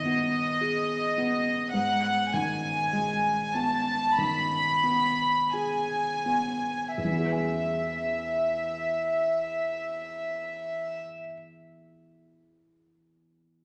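Moving and hopeful, this cinematic orchestral film-score fragment drifts in E major at a rubato 40-54 BPM, slowing over its first 7.0 seconds as the harmony rests on G#m before settling on E. A close, up-front symphonic violin section carries the melody with a pure, floating sul tasto tone and soft attack, while a felt-muted upright piano adds mellow, intimate accompaniment with short sustain. The violins fall away at 11.0 seconds, leaving the piano to continue until 13.6 seconds in a lush scoring-stage reverb with highs rolled off above 10.8 kHz.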